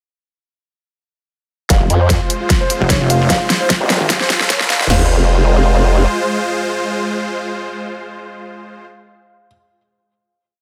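Heavy wobble dubstep in a half-time 4/4 feel, this short, complete piece feels chaotic and menacing from the moment the drums, formant bass, chords and piano crash in at 1.7 seconds on an F minor chord. A build-up with a drum fill and filter sweep runs to 4.9 seconds, driven by two layered electronic kits: one with a punchy kick, punchy snare, floor tom and crash, the other with closed hi-hat and a huge, overdriven snare placed up front. Two up-front wobble basses carry the low end with modulated phrases at changing wobble speeds: a saturated formant-sweep bass with chorus and overdrive, and a heavy, pulsing pluck bass that joins at 1.8 seconds and answers it. Huge, lush supersaw chords sustain overhead as a bright pad with sidechain pumping, while a very quiet riser adds transition effects from 2.7 seconds. In the background, a dark, mellow grand piano with audible action noise and dub echo repeats a sixteenth-note riff over a pedal note, lingering on through the final chord until 9.5 seconds. 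The dense, heavily limited master carries only light reverb.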